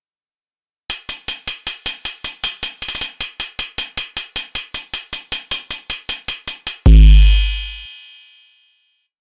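A booming analog drum machine enters at 0.9 s with a deep kick, metallic hi-hats in fast rolls and crash cymbal, driving a hard-hitting, melancholic half-time trap beat at 156 BPM through an overdriven, blown-out breakdown that sits up front in a small, dry room until the drums stop at 6.9 s, giving way to a final hit from 7.1 s.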